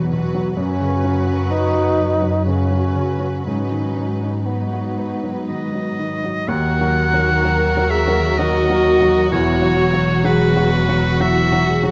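In a slow, rubato 3/4 at 58-65 BPM, this moving, longing cinematic film-score excerpt sets a rich violin section melody beside a pure, up-front alto flute from 0.6 s, over clear, polished baby grand piano, a distant, expressive viola section and close, smooth cellos, before a bright solo oboe takes a second line at 5.5 s and a background second violin section, double basses and a dark French horn section join by 7.4 s, all inside a moderate scoring-stage reverb.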